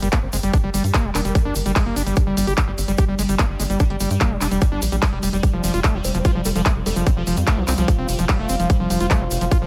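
Psychedelic trance at 147 BPM in G minor, this alien, intense excerpt is driven by an up-front, tight electronic kick and a punchy, sawtooth sequencer bass, with a layered drum and bass kit of handclaps and hi-hat plus a grainy acoustic egg shaker. A squelchy, distorted acid bass riff with delay rides on top, while a pulsing, tempo-synced gated texture and a deep, moody ambient pad sit behind it, both with chorus, reverb and sidechain pumping. A nasal, wobbling vowel-sweep bass with dub echo and a cassette-tape tone surfaces in the background from 0.0 to 1.7 seconds and again at 6.0 seconds, over a dry mix that moves from G5 to F5 at 5.4 seconds.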